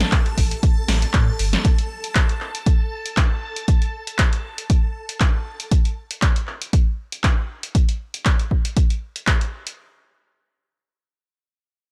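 A 4/4 groove at 118 BPM, with a light 54% swing on the sixteenths, pushes this gritty, driving acid house passage in A minor pentatonic, cut from a longer piece. The electronic kick sits up front, punchy and tape-toned, while an analog drum machine adds a snappy snare, handclaps and hi-hat with a short, small-room character. Under an Am7 harmony, a round, deep sine sub bass with tube saturation and sidechain pumping joins a very quiet, breathy pad layered with noise and ring modulation, and both stop at 1.6 seconds. A lush, vintage string machine sustains chords around A5 with ensemble chorus, a moving notch and sidechain pumping until 5.7 seconds. The overall sound is dry and close.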